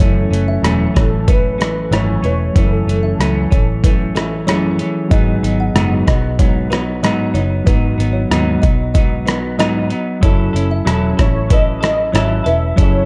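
A straight, unhurried 4/4 groove comes from a gritty, sampler-style soul drum kit up front, its thumpy kick, hi-hat and rim click carrying a tape-warm, compressed sound captured in a large room. Beneath it, a foam-muted, round picked electric bass holds down the low end, while a clean semi-hollow electric guitar sits forward in the mix with subtle chorus and a vibrato effect. Further back, a reedy, slightly out-of-tune electric piano plays accompaniment through its own built-in speakers, and a soft, woody kalimba adds an airy second line touched with chorus and analog delay. A velvety, detuned synth lead carries the melody from 1.0 to 4.5 seconds, then returns at 11.2 seconds with smooth, sustained notes and analog chorus. Moving between F#m7 and G#m7 under light reverb and a dark overall production, this hazy, lonely bedroom-pop fragment is cut from a longer piece.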